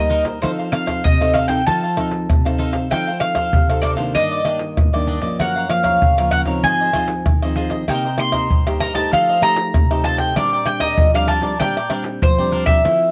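Samba and choro in Bb major at 97 BPM, this festive, lively clip is cut from a longer piece and carries the homespun character of a home cassette recording in a booth with moderate ambience. The mandolin leads the melody up front, its picked double strings sounding mellow and round between C5 and C6. Beneath it, a crisp, bright cavaquinho adds picked accompaniment set back in the mix with a touch of plate reverb, while a fingerpicked nylon-string guitar supplies classical-style support reaching down to Gb2. The percussion of tube shaker, pandeiro, surdo and tamborim sits close and forward, with a tight surdo and hard-handed playing, and a drum fill arrives at 11.6 seconds. The harmony moves through colorful jazz-inflected chords such as F7, Gbmaj7, Ab6 and Cm7 before settling on Bb69 near 10.4 seconds.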